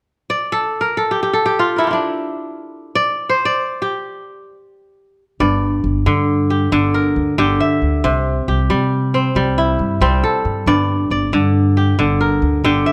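Fingerpicked, ringing and crisp up front, the kora spins hypnotic, flowing arpeggios alone in G dorian at 91 BPM in a straight 12/8 until a woody, thumpy pizzicato upright bass joins at 5.4 seconds, giving this West African traditional string piece, cut from a longer performance and set in light reverb, a dark low foundation as the harmony moves from G minor to C and back.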